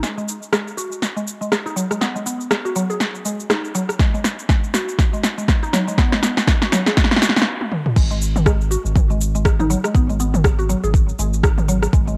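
A woody, mellow mallet-like synth pluck plays chorused, tape-echoed arpeggios over an overdriven deep house kit of cabasa, rim click, toms, crash and a punchy snare, opening this spiritual, earthy afro house excerpt with a swung build-up and drum fills. A deep electronic kick joins at 4.0 seconds, and after a brief stop at 7.5 seconds the drop lands at 8.0 seconds, when a round, nasal, dark analog bass enters, its sidechain pumping shared with the pluck. The whole carries the hazy grain of a home cassette recording in a light reverb.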